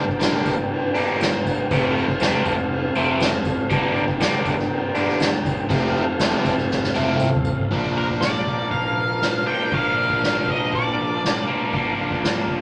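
Moderate studio reverb gives this dark, hypnotic psychedelic rock excerpt a natural sense of space, with drums and guitars up front and organ, bass and tambourine sitting in the background. At 120 BPM in a straight 4/4, a crunchy, bright, double-tracked overdriven guitar carries the riff through a phaser, over a soft-mallet drum kit with a boomy kick, medium-tuned snare, toms, and dark crash and ride cymbals. Beneath them, a punchy fuzz bass holds the low end, a clear tonewheel organ sustains chords through a slow rotary speaker and chorus vibrato, and a jingly tambourine adds percussion through the first part. The harmony alternates between G minor and F, and after a drum fill the music moves to B-flat at 7.7 seconds. An octave-fuzz lead guitar then takes the melody from 8.0 to 11.4 seconds, its distorted, warm tone cutting through the mix.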